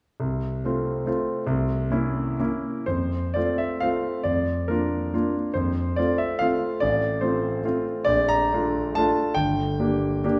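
Classical romantic dance in 3/4 and F major, proud and rustic, with a solo concert grand piano playing dotted rhythms at a rubato 114-151 BPM, its smooth, vintage tone and deep bass ranging from G1 to Bb5 as the harmony settles from a C7b9 tension into a second passage at 2.9 s that moves through F, Bb and G minor chords, all heard from further back in a wet recital hall with a 1.6-second reverb tail in this brief excerpt from a longer piece.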